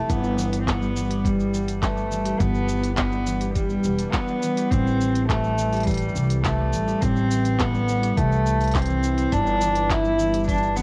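A bowed cello with a nasal, reedy gut-string tone sings the melody over ringing, fingerpicked harp arpeggios from the opening of this pastoral folktronica excerpt in G major at 104 BPM, joined at 0.1 s by a woody, dark pizzicato upright bass with tube saturation, a muffled, thumpy sampler-style kick and a produced electronic kit of cabasa, handclaps and smooth hi-hat, with the cello, harp and drums carrying a cassette-tape character in light reverb as the chords move from G6 to Am7 and back.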